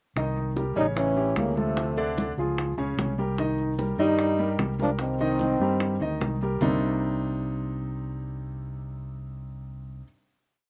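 This short Afro-Cuban jazz piece is driving and sultry, built on a warm grand piano playing a montuno in octaves, with its action noise audible up close, and a punchy, amped fingered electric bass up front playing a tumbao that anticipates the chords. Low-tuned, round bongos keep steady eighths along with a hand bell, while thick-skinned congas sit further back, mixing slaps and open strokes. At 0.8 s a breathy trombone takes the lead up front with a motif-based melody of song-like phrases and light vibrato. A mellow tenor saxophone shadows it in harmony, mostly in sixths, with subtone and scooped notes. A slapback echo clings to the piano, bongos, trombone and saxophone in an otherwise dry, outdoor sound. The horns drop out at 6.2 s and the drums soon after, leaving piano and bass to hold a final Cm9 chord from 6.6 s to the close.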